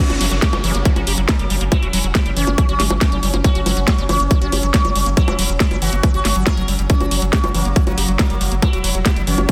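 A buzzing, plectrum-plucked sitar carries the melody through this intense, psychedelic trance drop at 139 BPM in straight 4/4, its shimmering sympathetic strings treated with phaser, delay and sidechain pumping. Underneath, an overdriven electronic kick sits tight and up front from 0.4 seconds, layered with an electronic kit of cracking snare, bright hats and bongos, both kit and kick given studio reverb. A deep, round analog bass with a triangle-and-sine tone anchors the low end, while a squelchy, resonant square-wave acid bass in the background plays a riff with filter sweeps, chorus and delay. A detuned, tempo-synced gated texture holds sustained chords with a slow attack, chorus, its own reverb and sidechain pumping. A background downlifter sweeps through the first 3.4 seconds, and a very quiet, formant-filtered wobble bass adds a second line in two brief passages. The whole cut is dense and heavily limited, with light reverb around it.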